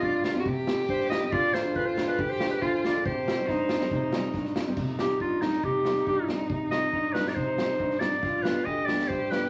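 A straight 4/4 groove drives this festive, soulful klezmer excerpt, with a street-band drum kit of boomy kick, medium-tuned snare and dark crash cymbals sounding airy in a big room beneath a woody upright piano accompaniment. A bright, up-front clarinet carries the classical-style melody and takes a solo from 4.8 seconds, while a single bowed violin adds a rich, smooth second line with vibrato, and the harmony moves from Cm through Ddim and back to Cm before landing on G at 8.2 seconds. A wet reverb surrounds the band, and vinyl crackle with a dulled top end lends an old-record haze.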